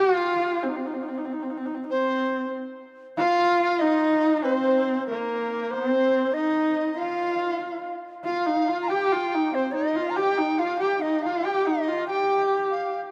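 Solemn and windswept, this 13-second excerpt of Mongolian folk music moves at 94 BPM in a straight 4/4, set in the C yu mode. A single bowed horsehead fiddle carries the melody with a husky, focused tone, colored by vibrato and portamento. Above it, a large bamboo dizi adds a second line whose soft attack and buzzing membrane give it a reedy brightness, and both instruments sit in a huge ambient reverb.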